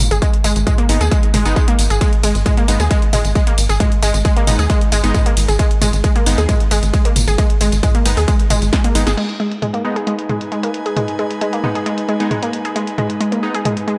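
Driving peak-time techno at 134 BPM in G# minor, industrial and intense, with a heavy electronic kick and dark, tight sequencer bass pumping through the drop, a punchy analog drum machine with low-passed hats, toms and cymbals, an overdriven, warbling unison pluck riff up front with digital delay, detuned supersaw stabs, and a soft, breathy chorused pad that enters at 9.6 seconds after a drum fill and band accent.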